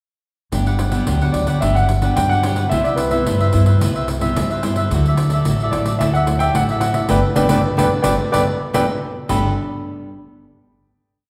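Samba and choro at 110 BPM in G major, lively and playful, where a warm grand piano carries a motif-based melody from 1.3 seconds over crisp strummed cavaquinho, fingerpicked classical nylon-string guitar with thumb bass and syncopated plucked chords, a woody, thumpy gut-string upright bass playing a samba figure, and a jingly, close pandeiro, with a band accent from 7.1 seconds leading into a final chord that rings in the wet recital hall reverb until 11.3 seconds.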